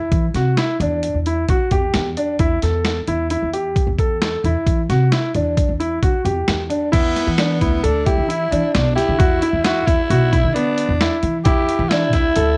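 Set in a brooding 5/4 at 132 BPM with a straight feel, this intricate progressive instrumental in E minor is cut from a longer piece. A compressed, sampler-style boom bap kit sits up front with a thumpy kick, a medium-tuned snare, hi-hat and crash, its gritty sound colored by cassette tape. Beneath it, a woody, growly upright bass with steel strings plays pizzicato in a dark low register, while a smooth, vintage grand piano, also up front, spins arpeggios over an unresolved opening. At 6.9 seconds the harmony settles on E7(no3) and a raspy, bright alto saxophone enters as a second line, carrying a pop-style vibrato. The home cassette recording rolls off the top end and places the band in a light studio reverb.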